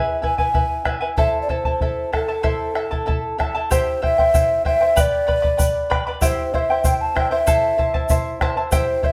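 A straight two-beat pulse drives this Andean folk ensemble piece, a short cut from a longer performance that feels both festive and melancholic. The bombo's round, up-front thump joins almost at once. A fingerpicked charango, also up front, supplies a bright, shimmering accompaniment on its double strings, some of them doubled at the octave. Over them an alto ocarina carries the melody with a clay, hollow, breathy tone, soft attacks and a touch of vibrato. At 3.7 seconds the harmony moves from E and A minor toward C and G, and a close, grainy tube shaker enters quietly until 8.9 seconds. The band plays live together in one room, wrapped in a moderate large-studio reverb.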